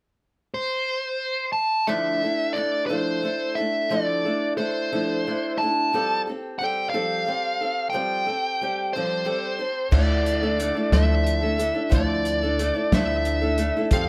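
Recorded by a band playing live in one room and bathed in a wet studio reverb, this reflective, wistful stretch of folk rock and heartland rock moves in 6/8. A dark, smoothly overdriven electric lead guitar carries the melody up front from 0.5 seconds, joined at 1.9 seconds by a boxy, woody, ladder-braced acoustic guitar on old strings, picked as accompaniment over Dmadd9 and Fadd9 chords. At 9.9 seconds a pizzicato upright bass with steel strings and a cloth-damped, thuddy drum kit with dark cymbals, a tight kick and a rolled-off top come in before the piece is cut off.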